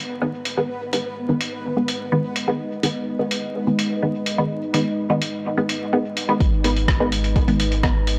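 A straight 4/4 pulse at 126 BPM drives this deep, hypnotic dub techno fragment in G# minor, cut from a longer piece: a muted, detuned chord stab with phaser and dub echo sits up front from the start, its filter sweeping along with that of a moody, slow-attack ambient pad that enters at 1.2 seconds, while a bright, resonant texture bubbles through random filter steps in the background and a muffled, pitched-down sampler-style kit of hi-hat and rim click taps in at 0.5 seconds. At 6.4 seconds the texture drops away as a clean sine sub bass with tube saturation arrives alongside a layered electronic kick, with sidechain pumping on the pad, stab, texture and bass. The dry, gritty recording carries light reverb, transformer saturation and vinyl crackle.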